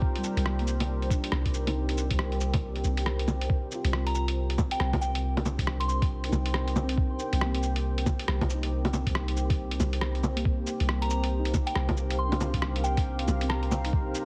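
Heavily compressed with a radio-like sound, this future garage excerpt sits in light reverb and digital ambience, setting a ghostly, melancholic mood in C minor at 138 BPM with a 16th-note swing over a lingering Cm7. A thumpy, muffled, pitched-down electronic kick anchors the groove, joined by a tape-warm, up-front lo-fi sampler-style kit of bongos, cabasa, hi-hat and rim click, both carrying studio reverb. Beneath them, a deep, round, sine-based 808-style bass holds a low C and pumps with the sidechain, as does a moody, detuned sawtooth pad whose slow-attack chords are wave-folded and ring-modulated and bathed in chorus and built-in reverb. In the background, muted, intimate felt-like synth keys with a noise layer supply decaying accompaniment through chorus, phaser, tape echo and sidechain pumping. A pure, gentle FM bell with chorus, phaser and tape echo carries the sparse melody, sounding briefly at the very start, then returning at 4.1 seconds and again from 11.0 seconds.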